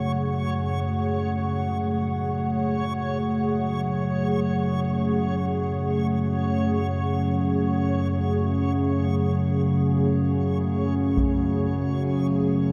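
In free time, this dark ambient drone in F# minor unfolds as an ominous fragment cut from a longer piece, resting on a single F#madd9 chord inside a vast, echoing space with a long, wet reverb. An analog drone holds the low register from F#2 to C#3, its sawtooth and pulse-wave tone warbling and evolving under chorus, up front and mellow. Above it, a dark analog pad sustains deep, moody chords from A3 to F#5, its detuned square and sawtooth voices thickened by a sub octave, ring modulation and chorus. A reversed, granular texture hovers faintly between G#4 and C#5, dreamy and swelling in its own built-in reverb, while a bright, worn grand piano plays arpeggios that are barely audible beneath the haze. Near the close, a taiko ensemble struck with hard sticks lands a brief, close and dry hit from 11.2 to 11.4 seconds, dulled by a low-pass filter.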